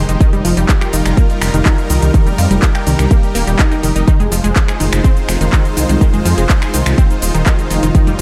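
A deep house kit of finger snaps, handclaps, metallic hi-hat and shaker enters at 0.1 seconds, sounding overdriven and re-recorded in a large room, and a punchy, up-front electronic kick joins at 0.2 seconds to drive a straight 4/4 pulse. Underneath, a dark, rumbling detuned saw bass sits up front, a bright supersaw pad with a slow attack holds sustained chords, and a lush unison pluck plays arpeggios colored by cassette tape and delay, with the bass, pad and pluck all pumping from sidechain. Driving and emotional, this dry progressive house excerpt moves from Ebadd9/F to Fm7 at 4.1 seconds.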